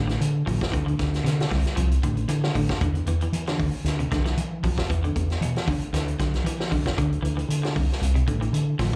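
A lightly swung sixteenth-note afrobeat groove drives this defiant nine-second cut from a longer piece, heard as a live gig through a club PA with small-room reverb. A dark, round fingered electric bass sits up front beside a warm vintage drum kit of punchy kick, medium-tuned snare and hi-hat, its top rolled off. A twangy, slightly broken-up electric guitar plays picked arpeggios with subtle chorus and slapback echo over D7sus2 and E5 chords.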